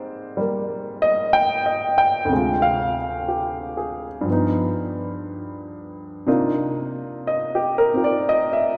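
Relaxed and sophisticated, this short solo jazz excerpt moves at a slow 61 BPM in 4/4, with a swung, rubato feel. A warm, up-front baby grand piano plays alone throughout its 8.8 seconds, ranging from D2 to G5 over Abmaj9, Dm7b5, G7b13 and Cm11 chords. A wet church reverb with a 2.6-second decay gives the piano the spacious sound of a church or concert hall.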